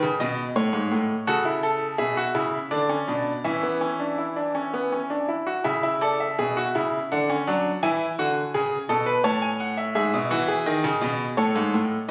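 Joyful and stately, this brief passage from a longer piece is a baroque-style fugue in three voices for solo grand piano, moving in a steady, straight 3/4. A baby grand carries all three parts alone from start to finish, reaching from G#2 up to A5, with a brilliant, polished tone that sits up front and close, and the audible action noise lends an intimate feel. The harmony opens on a C#7 chord and passes through Amaj7/G#, A/C# and Bm/D before settling onto E5. At 5.7 seconds a second section begins, moving from A/C# through Dmaj7 and E to A and E/G#, then ending on Amaj7/G# at 11.4 seconds. Captured on a phone in the room, the sound has light reverb, studio reverb and compression, giving the piano a present, close-up character.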